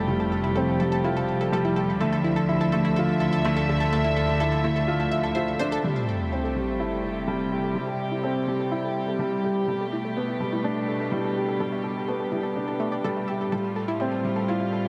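Piano and strings electronica in A minor at 125 BPM in a straight 4/4, this melancholic, hypnotic passage is cut from a longer piece and soaked in a huge ambient reverb that gives the whole mix a dreamy haze. Up front, a woody upright piano with long sustain plays a riff through a low-pass filter and delay, with a filter sweep on it over the first 5.8 seconds, while a chamber string section holds sustained chords with a reedy, gut-string period tone and light vibrato. Beneath them, a bowed double bass section with a dark, soft-attack sound carries the bass line until 5.8 seconds, where an electronic sub drop lands as an impact. Throughout, an analog pluck built from sawtooth, pulse and triangle waves with a noise layer and wave-folding spins bright, round arpeggios through chorus and delay, taking on a filter sweep from 5.8 seconds onward. The harmony moves from Fadd9 and Dmadd9 to Am7, Gadd9 and back to Fadd9, keeping the mood suspended and wistful.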